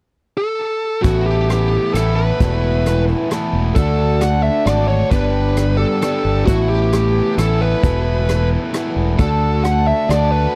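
Nostalgic and hopeful, this short excerpt of folk rock and heartland rock in a straight 3/4 at 132 BPM opens with a distorted, bluesy lead guitar carrying the melody with tape echo from 0.4 seconds, joined at 1.0 seconds by a shimmering, octave-doubled twelve-string acoustic, a dark, double-tracked overdriven electric riff, a round fingered bass and a natural country drum kit with a punchy kick, playing hi-hat, kick and rim click, all captured dry and close in a 1970s-style studio over chords moving from Asus2 through Esus4, D and G.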